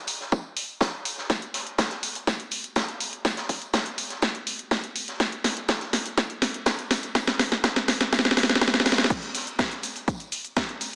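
A house drum kit leads this dreamy, emotional house piece at 123 BPM in a straight 4/4. Its cracking snare, cabasa, crash cymbal and hi-hat sit up front with a layered, produced electronic character, re-recorded in a large room. Beneath it, a punchy, tape-warm electronic kick drum drives the groove, while a big acoustic rock kit adds a fat snare, hi-hat and tambourine from a bright stone room, filtered to keep it lean and set further back. The passage is a build-up carried by a long drum fill from 1.3 seconds, giving way to a drop at 9.1 seconds. The whole mix has a small-speaker tone within a moderate recital-hall reverb, and the clip is cut from a longer piece.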